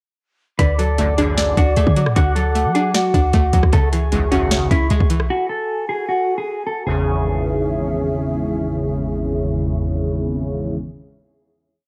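A half-time trap beat at 153 BPM drives this brooding, hard-hitting hip hop piece in C# phrygian, its up-front electronic kit pairing a hard-clipped kick and sharp snare with metallic hats and rim clicks. Underneath, a clean 808-style bass lays long, boomy sub-bass notes that follow the kick, with pitch slides. A dark, compressed electric guitar carries a looping fingered melody through phaser, low-pass filter and analog delay. Above it, a velvety synth lead adds a brief, sparse counter-melody with vibrato, and a twangy resonator pluck loops a rising and falling eighth-note arpeggio as the chords move from D to C#m to F#madd9. An airy flute ensemble with a hollow tone holds a sustained pad low in the mix, while a juicy, detuned, resonant polysynth punches short stabs up front. The drums, bass and pluck stop at 5.3 s. After the hook ends at 6.9 s, the stabs and flutes hold a final C#m chord while the guitar carries on until 8.0 s, all captured as a dry, gritty hardware recording set in digital ambience.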